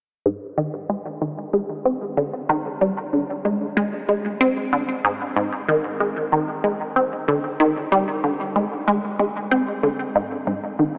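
Heard through a thin, AM-radio filter and bathed in a huge, wet ambient reverb with an 8.1-second tail, this short ambient excerpt feels cosmic and expansive. Set at 94 BPM in a straight 4/4 and centred on Ab lydian, it features a single resonant blip pluck playing solo from 0.3 to 10.9 seconds, ranging from Ab2 to C4. The synth is a detuned sawtooth with a juicy, squelchy filter pluck: a fast attack, a short decay and a moving notch give each note its character. Chorus, phaser and analog delay thicken and smear the plucks. The synth sits up front against the cavernous space, making the brief passage feel like a distant transmission from somewhere vast.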